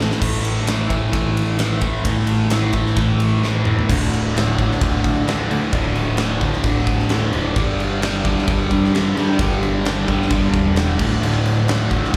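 Heard through a club PA with light, roomy reverb, this dark, angsty stretch of quiet-loud alternative rock is cut from a longer piece and moves at 131 BPM in a straight 4/4, in D minor with tuning set at A4 = 437 Hz. A huge arena drum kit sits up front with a fat snare, punchy kick, bright cymbals and a pumping hall sound, opening with a fill and adding another just before the shift at 3.9 seconds. Two guitars carry the riff together: a cranked stack guitar, overdriven and picked with phaser and slapback echo, and a distorted electric guitar further back, also treated with slapback echo. Underneath, an overdriven picked electric bass adds a round, direct low end. From 3.9 seconds a lush vintage string machine with sawtooth tone, sub octave and ensemble chorus holds slow-attack chords, barely audible, as the harmony moves from a bare A5 through Dm and Gm before returning to Dm at 11.0 seconds.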